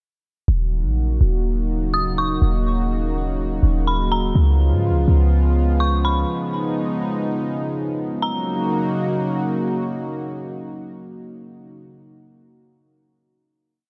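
Ethereal and hazy, this short atmospheric cloud-rap piece in Eb minor moves at 124 BPM with a half-time feel, as a smooth, chorused analog pad sustains dark chords from 0.5 to 11.8 seconds, a deep, boomy 808-style bass holds long sub-bass notes with pitch slides until 6.2 seconds, and an eerie, inharmonic detuned synth bell with chorus and tape echo repeats a sparse looping melody like a sampled loop, all in light reverb before settling on a final Ebm7 chord.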